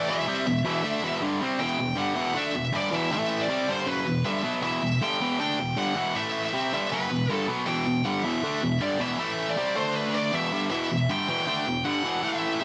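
A double-tracked, high-gain rhythm guitar sits up front in this metal excerpt, its bright, picked distortion driving a riff that ranges from E2 to D4. Above it, a darker, picked lead guitar carries the melody between B4 and G5, sitting a little lower in the mix. The mood is epic and relentless, moving at 158 BPM in a straight 4/4 and centred on E minor. Both guitars play together for the full 12.6 seconds, with the music shifting into a new section at 1.6 seconds. The harmony keeps returning to Em with brief A5 chords, and a quick Csus2 to D5 passage near 9.6 seconds leads back to Em, all in a light reverb.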